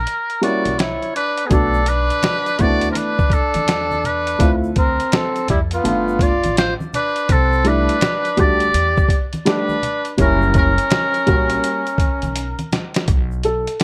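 Nocturnal and mellow, this swung jazz-hop excerpt sets a buzzy metal-muted trumpet melody with plate reverb and analog delay over a breathy tenor saxophone second line, a woody pizzicato upright bass, a dark upright piano with audible action noise, and a gritty, tape-warm sampler-style drum kit that opens with a break and plays a fill at 12.4 seconds, while a tube shaker and congas join in the background at 1.5 seconds.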